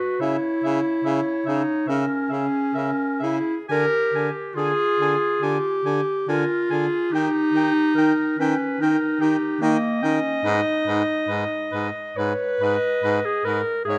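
Classical chamber music for a quartet of single reeds, this brief excerpt from a longer piece carries an elegiac, melancholic mood at an unhurried, rubato pace in 4/4. The soprano saxophone holds the melody with light vibrato and a smooth top, though it sits in the background of the blend. Beneath it, a distant, roomy clarinet adds a second line, while a dark-toned clarinet stands up front with the accompaniment. The baritone saxophone anchors the bass with a vibrato-tinged, mellow tone, also placed prominently forward. The harmony moves from C#m through Ddim and D# before settling on G#m near 10.5 seconds, and a moderate recital hall reverb surrounds the close, detailed sound.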